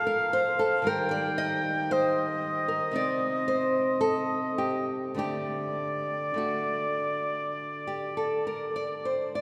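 A freely rubato 4/4 pulse drifting between 49 and 58 BPM carries this elegiac, melancholic romantic duo, cut from a longer piece, in which a clear, close-miked oboe sings a classical melody with light vibrato between D5 and G5 over a bright, fingerpicked nylon-string guitar reaching from C3 to Eb5, both up front in a church or concert hall whose wet cathedral reverb lingers around harmonies moving from Dm/F through Eb and Cm to D.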